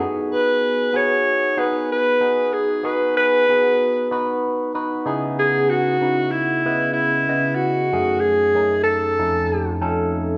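Funky and nocturnal, this jazz piece moves at 95 BPM in 4/4 with a light sixteenth-note swing, cut from a longer performance. A bright, barky tine electric piano, lightly overdriven through a combo amp with a phaser, sits up front with the chords from G#m7 through C#m7 and F#m69 to Faug7. Entering at 0.3 seconds, a clear alto saxophone plays the vintage-style solo melody with subtone, soft attacks, scooped notes and light vibrato, while the band plays live in one room under a wet, large studio reverb with softened highs.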